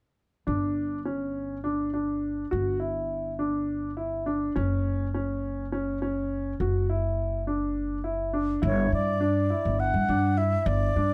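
Set in light reverb with every part up front, this driving, bright progressive instrumental excerpt moves in 7/8 at 206 BPM in eighths with a straight feel, its harmony shifting between G5 and F#5. A grand piano with long sustain plays present arpeggios from 0.5 seconds, over a woody, pizzicato upright bass carrying the low end. At 8.7 seconds an airy, reedy baroque flute enters with a crisp attack and vibrato to carry the melody.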